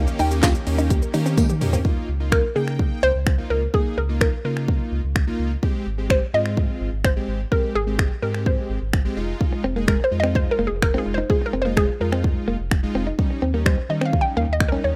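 Opening on a brief, busy intro with a hollow, bouncy square-wave pluck melody up front, a lush warbling unison pluck arpeggio, a supersaw pad, a faint jingly tambourine, a clean direct-recorded electric guitar riff and a punchy house drum kit capped by a drum fill at 1.4 seconds, this driving, confident dance-pop excerpt at 127 BPM then settles at 1.8 seconds into a groove carried by the fat, bold sawtooth polysynth chords and deep sub bass that run throughout, both pumping to the sidechain, over cracking snare, bright hats, snaps, claps and shaker, moving from Db69 through Abmaj7 and Fm7 back to Eb7, with the chorus-drenched guitar riff returning at 9.5 seconds in a dry, rough home-demo mix.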